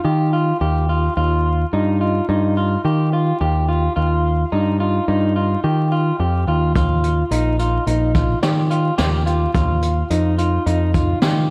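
A bright, picked electric bass drives this intricate progressive instrumental in 5/4 alongside slightly broken-up, lo-fi electric guitar arpeggios through a small old amp with analog delay, while a brushed jazz kit with a boomy kick and high-tuned snare enters at 6.8 s, the Ebadd9 and Eb harmony drifting through a dreamy, reverb-soaked mix with vinyl crackle in this short fragment of a longer piece.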